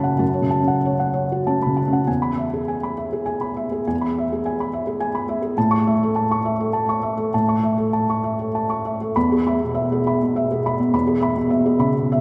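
This neoclassical minimalist piano piece, cut from a longer work, carries a reflective, melancholic mood at a flexible rubato pace of roughly 94-106 BPM in 3/4. A single felt-muted upright piano plays solo throughout, its tone soft, dark and intimate, the thick felt giving each note a mellow, hushed quality while the instrument sits up front in the mix. Its range reaches from E2 up to C#6. The harmony opens on F#m, moves to E at 2.1 seconds, settles on A, and returns to E at 9.2 seconds as the passage shifts into its final stretch. A wet church reverb with a long 2.8-second decay surrounds the piano, placing it in a resonant church or concert hall space.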